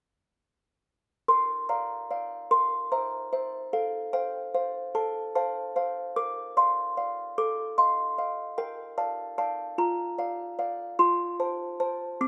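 A lone music box carries this short classical lullaby, its delicate, tinkling plucked tones sitting up front and sounding from 1.3 to 12.3 seconds. The larger box gives the sound a mellow, dark and smooth quality, soft rather than bright, spanning from C4 up to D6. Set in Bb major and in 6/8 with a straight feel at 49 BPM, the piece moves through simple, settled harmony that begins on Bb and comes to rest on F at 11.0 seconds. The mood is dreamy and tender, suited to drifting off to sleep. Close, detailed miking captures every pluck, while light reverb adds a touch of air around the instrument in this fragment cut from a longer piece.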